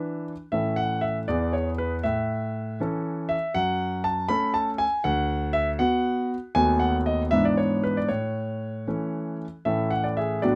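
Cheerful and graceful, this short cut from a longer classical-period piano sonatina in A major moves in a straight 6/8 at 79 BPM (dotted quarters), with a solo grand piano, clear, intimate and up front with audible action noise, playing from D2 to B5 through a brief section that passes from A and F#m through Bm/D, B7/D# and E7/G# to settle on A at 8.1 seconds, all captured by close, detailed microphones in light reverb.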